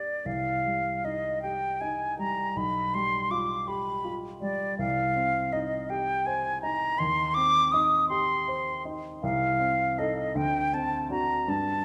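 A moderate concert-hall reverb surrounds this elegiac, melancholic excerpt of romantic classical music in C minor, set in a slow, rubato 6/8 at 54 BPM in dotted quarters, where an airy, metallic silver concert flute, close-miked and up front, sings the melody between D5 and Eb6 with vibrato and tongued notes over a polished, present, warm baby grand piano accompaniment that moves from Cm through G7/B and Cm/Eb to Adim/C and D7.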